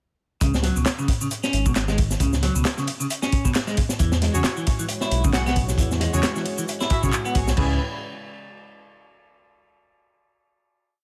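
A swung, gritty breakbeat drives this energetic piece from 0.4 seconds: a looped acoustic break with edits, built on a punchy kick, a high-tuned snare and dark cymbals, saturated and up front with a rolled-off top. A machine layer of shaker, ride and handclaps sits quietly over it, tape-warm and re-recorded in a small room. Underneath, a deep, rumbling detuned saw bass carries a dub-style line with tube saturation, while a clean hollow-body electric guitar picks a repeating sixteen-step riff through tube saturation and delay. From 4.3 seconds a rich chamber string section adds earthy, bowed, syncopated chord stabs with light vibrato and delay, and a moody analog pad soon follows in the background with chorus and sidechain pumping. The dry, close-sounding piece stays in one long drop before settling on a final chord at 7.6 seconds.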